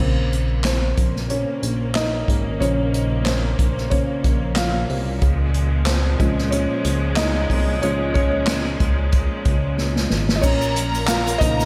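A soft, felt-muted upright piano with slapback echo carries this uplifting, hopeful piano-driven pop excerpt at 92 BPM in 4/4 with a light sixteenth-note swing, opening on a Bbmadd9 chord. Clear symphonic strings hold sustained chords beneath, a glossy, nasal chorused synth bass anchors the low end, and a roomy acoustic drum kit played with bundle sticks brings a punchy kick, dark cymbals, handclaps and a fill at 9.8 s. At 10.4 s a rich, expressive violin section with tape and slapback echo adds a second line alongside a grainy, very quiet tube shaker, all set in a lush hall reverb with a big arena sound.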